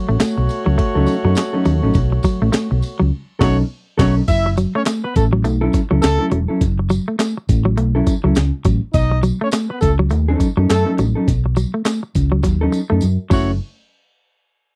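Driving and cool, this funk excerpt rides a swung sixteenth-note feel over chords moving between B9 and F#m7. A hollow-body short-scale electric bass sits up front with a round, punchy tone. A breakbeat sampler-style drum kit, pitched up and gritty, supplies a thumpy kick, a medium-tuned snare, hi-hat, ride, crash and handclaps. A clean semi-hollow electric guitar plays a low riff, joined at 1.0 seconds by a mellow, dark electric guitar accompaniment, both fingered and compressed. A horn section with light vibrato and a smooth top carries a second line, while a jingly vintage tambourine sits in the background. The band hits an accent at 3.1 seconds and a drum fill arrives at 12.4 seconds, all captured in a dry, close 1970s-style recording.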